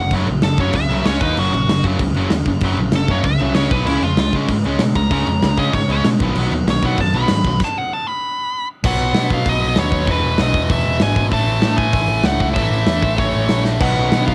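A nasal, parked-wah lead guitar solo opens this rowdy, rebellious punk rock excerpt at a straight 193 BPM over a tight, bright distorted rhythm guitar, a crunchy overdriven guitar in the background, a growly picked bass and a big, dark acoustic kit with a punchy kick. The mix is dry, with everything but the bass tape-saturated like a home cassette recording. A stop at 7.6 seconds takes out the crunchy guitar until it returns at 13.8 seconds, just after a drum fill at 13.7 seconds.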